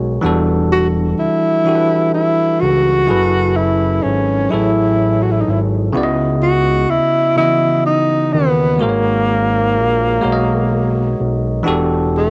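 Slow six-eight R&B at 42 BPM in C# minor, this yearning, late-night fragment from a longer piece has a dry, close home-cassette sound. A bell-like tine electric piano tinged by tape comps through minor eleventh chords, starting on Em11 and moving through F#m11, C#m11 and G#m11, over a fat, saturated analog bass with a nasal, detuned edge. At 0.7 seconds a breathy tenor saxophone takes the solo melody, dark and whispered with vibrato, subtone and scooped notes, also carrying a cassette-tape tinge and sitting slightly ahead of the other parts in the mix.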